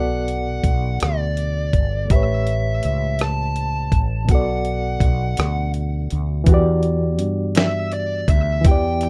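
A dry, rough home-demo sound frames this late-night, yearning fragment of slow six-eight R&B in E minor, moving at 55 BPM in a straight feel and cut from a longer piece. A dark, fuzz-distorted lead guitar carries the picked melody between D5 and A5, trailed by a digital delay, while a reedy, clean electric piano with medium tremolo supplies the accompaniment. Underneath, a mellow fretless bass sits up front with a round, punchy tone in the low register. The dusty, sampler-style drum kit enters at 0.3 seconds, compressed and gritty, with a thumpy kick, fat snare, rim click and hi-hat prominent in the mix. The harmony moves through Bm7 and A9 before returning to Bm7, then shifts to Em9 at 6.5 seconds as a second section begins.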